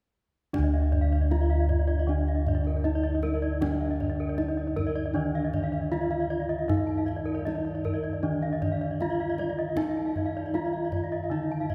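A cathedral-like reverberation surrounds this shimmering, hypnotic passage of Balinese gamelan, cut from a longer piece and recorded in a church or concert hall. At 78 BPM in a straight 4/4, several bronze metallophones ring out together from about 0.5 seconds, some struck with horn mallets for a bright edge and some with paired tuning that produces shimmering beats. One metallophone, played with a wooden mallet, sits close and up front with a dry, full tone. A middle-register metallophone carries the melody, while two higher ones spin arpeggios and a low one holds the accompaniment. Beneath them, bossed gongs give a round, beating bass up front, and the kendang adds deep, soft-handed drumming until the excerpt ends at 11.7 seconds.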